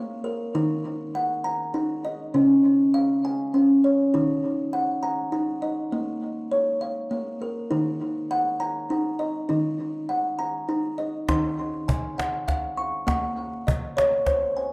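Meditative world music for tuned percussion, this gentle excerpt moves at 67 BPM in a straight 6/8 feel in Eb dorian, with an up-front kalimba playing woody, hollow, fingertip-plucked arpeggios from Db3 to Db6 that ring out through a diffuse ambient delay over Ebm, Db and Bbm chords. At 11.3 seconds the harmony drops away and an acoustic cajon joins with faint snares and a live-room character, and Bbm returns at 13.1 seconds. A dark, warm production sets the pieces in a wet recital-hall reverb alongside a small-room reverb, leaving the sound airy and mellow.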